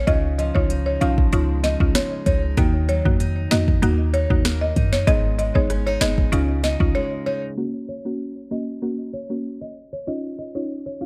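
Dancehall in F# major at 96 BPM, this bouncy, summery excerpt rides on an up-front, tape-warm afro-pop drum kit with a deep kick, sharp snare and smooth hats. Around it sit a boomy, sine-like 808-style bass, picked steel-string acoustic guitar arpeggios, a round FM synth pluck with chorus, and a buzzing, dark, woody marimba melody carried by digital delay. The drums and bass drop out at 6.9 s for a brief break, and the guitar stops at 7.6 s. From there the marimba and pluck carry a filter sweep to the close at 11.1 s, the chords moving from C#add9, D#m and G#m toward F#, all in a dry, low-pass-filtered sound.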